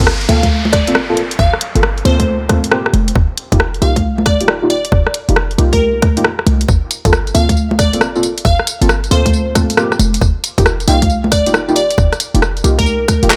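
Late-night and moody, this short cut from a longer two-step UK garage track rides at 136 BPM in G minor with a shuffling 16th-note swing. Deep, mellow chord stabs, soft and dark with a detuned, sub-octave body and a filter sweep, carry a chorus and phaser as they move between Gm11 and F9sus4. A punchy, tight 808-style bass with a sine core and a noise layer sits low, while a tight, layered electronic kick anchors the groove. The up-front garage kit brings bright hats, handclaps, rim clicks, tambourine and congas in a studio reverb, and a glassy, crystalline wavetable pluck enters at 0.3 seconds with chorus and dub echo. A downlifter sweeps through the opening 3.2 seconds, and the whole passage sits in a digital ambience.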